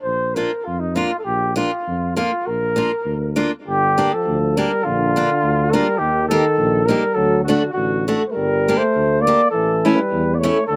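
Recorded dry in the open air, this festive, jolly alpine folk dance excerpt at 101 BPM in 2/4 with a rubato feel has a mellow flugelhorn up front carrying the melody with vibrato and slapback echo, a bright picked steel-string acoustic guitar accompanying, and a smooth-topped tuba with light vibrato on the bass, while a warm, soft-attacked euphonium adds a second line from 3.7 s as the music turns from Bb major to G minor.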